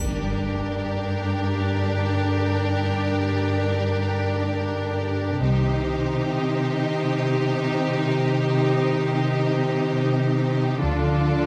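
Dramatic and relentless, this cinematic orchestral passage is cut from a longer piece and builds steadily as it moves through a sequence of minor chords. A bright, focused violin section carries the melody with lush vibrato, while a second, more distant violin section adds an intense, clear line beneath it. A rich, even viola section supplies accompaniment, and a mellow, tight French horn section holds sustained chords close to the listener. The up-front cello section anchors the bass with a smooth, full tone, and a double bass section with a polished top adds weight in brief bursts at the start and again at 5.4 and 10.8 seconds, where the harmony shifts. A huge, bright impact sounds in the background for the opening 2.7 seconds, and the whole ensemble sits in the lingering reverb of a recital hall.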